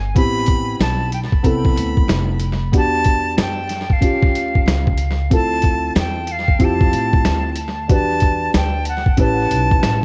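A woody pizzicato upright bass opens this cool, smoky jazz-hop cut from a longer piece, joined at 0.1 seconds by a dark, boxy baby grand piano, before an airy, reedy silver concert flute with vibrato and tape echo takes the melody at 0.2 seconds over a swung 93 BPM groove in D dorian. An up-front, pitched-down boom bap sampler kit arrives at the same moment, with a thumpy kick, medium-tuned snare and hi-hat carrying 12-bit grit and tape echo. Moving through chords like Am9, Em9 and A7b13, the echo-heavy mix sits in a small room's light reverb beneath a bed of vinyl crackle.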